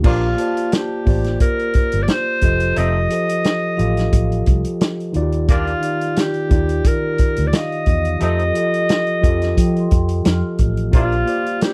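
A warm, softly attacked alto saxophone carries the melody up front from 0.1 seconds, its vintage, classical-style tone giving this short cut from a longer piece of lush 1970s-style soul a bittersweet, silky character. Underneath, at 88 BPM in 4/4 with a lightly swung sixteenth feel, a warm vintage drum kit with a punchy kick, a medium-tuned snare, crash, hi-hat and a rolled-off top sits close in a small, natural room, joined by a dark, round, foam-muted electric bass. A mellow, clean tine electric piano heard through its built-in speakers fills out the harmony, moving through Bb6, F7 and Ebmaj7 before returning to Bb6 near 10.9 seconds. A mellow jazz-style horn section adds soft-attack stabs with light vibrato, while a metallic, ringing vibraphone struck with medium hard mallets shimmers with slow motor vibrato in the background. The whole has the dry, close feel of a 1970s studio recording.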